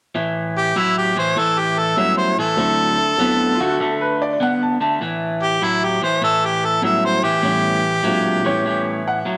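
Light studio reverb frames this gritty, soulful swung blues excerpt at 99 BPM in A mixolydian, where a slightly broken-up, compressed electric guitar riff opens at 0.1 s, an up-front harmonica with overdrive, light vibrato and scooped notes carries the jazz-style melody, a dark, mellow grand piano with audible action noise accompanies from 2.0 s, and a brilliant, woody upright piano with slapback echo adds a second line from 3.6 s over A7 and D7 chords.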